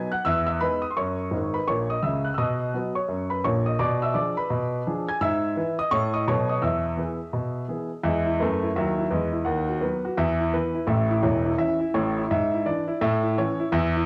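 A warm grand piano carries this short stride-jazz passage entirely on its own, sitting present and up front with the soft grain of cassette tape on its tone. The mood is playful and exuberant, moving at a brisk 169 BPM in 4/4 with a swung eighth-note feel. The piano spans from deep in the bass up into the high treble, and it slips in a quick fill between 1.3 and 2.4 seconds. The harmony opens in B major and settles into E major from 5.2 seconds, passing through colorful chords such as Emaj7, Bdim7 and B7 before a second section begins at 8.0 seconds with moves like B/D#, E7/G# and A. Light reverb and studio ambience surround the home cassette recording, and the clip is cut from a longer piece.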